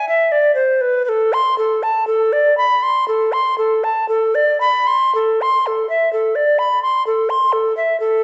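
A mellow tenor recorder plays alone and up front through this short excerpt of a baroque-style classical fantasia, its woody, airy tone carrying vibrato and a tongued chiff on the notes. The mood is solemn and introspective, the line moving freely in rubato over a slow four-beat pulse, and the opening idea returns at 5.1 seconds. A moderate recital-hall reverb from a church or concert hall surrounds the instrument.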